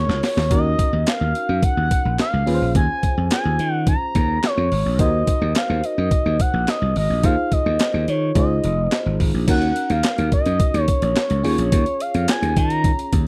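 A straight 4/4 groove at 107 BPM drives this slick, late-night early-eighties boogie funk excerpt in Eb dorian, where a gritty, thumpy sampler-style drum kit opens with a fill and sits up front beside a growly, punchy slap bass, while a glassy, bell-like FM electric piano with chorus comps through rich ninth chords and adds a fill at 13.1 seconds, and a smooth sawtooth-and-triangle synth lead with vibrato, chorus and slapback echo sings the melody in a dry, close studio sound.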